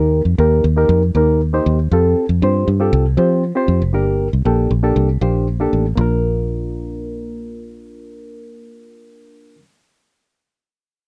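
A dark, round, foam-muted fingered electric bass sits up front in this danceable, joyful slice of uptempo 1960s-style soul, cut from a longer piece. Beside it, a clean, reedy electric piano heard through its built-in speakers adds phaser-tinged accompaniment over chords moving from Eb through Fadd9 and Gm before the music arrives on Bb at 6.0 seconds. Light reverb gives the pair a touch of space, and both parts play through to 9.6 seconds.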